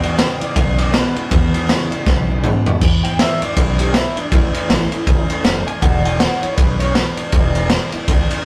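A raw garage drum kit sits up front in this rowdy, retro rockabilly cut from a longer piece, swinging along at 160 BPM in 4/4 in E mixolydian, its punchy kick, medium-tuned snare, dark cymbals and toms sounding saturated and gritty, with a rolled-off top and a pumping small-room sound. An upright bass, plucked on gut strings, adds a woody, thumpy low end. Two picked electric guitars through a small old amp, each slightly broken-up and twangy, sit in the background: one plays a low riff that ends at 2.8 seconds, as a drum fill from 2.1 seconds wraps up, and the other carries the melody, while a clean electric guitar solo runs from 2.8 seconds. A picked dreadnought acoustic guitar with fresh strings gives full-bodied, bright accompaniment, finger squeak and all. The harmony rests on E, moves to A at 4.3 seconds and returns to E, all in a rough rehearsal-room recording with tube saturation and light reverb.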